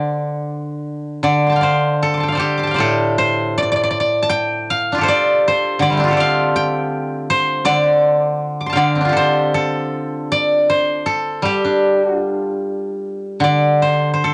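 In a rubato 4/4 with uneven beats, this contemplative, longing fragment of Chinese traditional solo plucked-string music features a steel-string zither, played with fingerpicks and placed up front, whose ringing, silvery acoustic tone spans from low to high registers for the full 14.3 seconds, captured on home cassette in a modest booth ambience.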